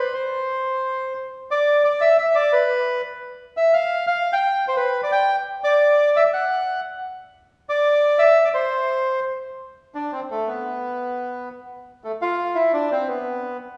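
A reedy, vintage-toned bandoneon plays alone and up front through this short passage cut from a longer tango, its band-limited sound ringing into a wet recital-hall reverb. The mood is passionate and melancholic, moving in a rubato 3/4 at about 174 BPM, with a contrasting middle passage from 1.3 seconds before the opening idea returns at 9.6 seconds.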